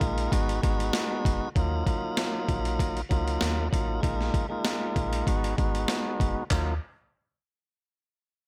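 A swung sixteenth-note groove at 97 BPM in 4/4 drives this gritty, dark boom-bap hip-hop excerpt in Eb minor, tuned to A4 = 436 Hz. The sampler-style drum kit sits up front with a compressed, gritty character: a thumpy kick, a high-tuned snare, handclaps and hi-hat, carrying the air of having been re-recorded in a large room. Beneath it, a woody FM bass offers soft, round notes with a fast attack that decays into a dark tone. A tonewheel organ, also up front, fills out the chords with a full, lightly overdriven sound, vibrato and audible key click through a stationary speaker and a low-pass filter. From 1.6 seconds a filter sweep moves across the organ as the harmony runs from Ebmadd9 through Bb7sus4 and Abm7, returning to Ebmadd9 at 6.5 seconds. The mix is dry, with little reverb, and the parts fall away just before 7 seconds in this fragment of a longer piece.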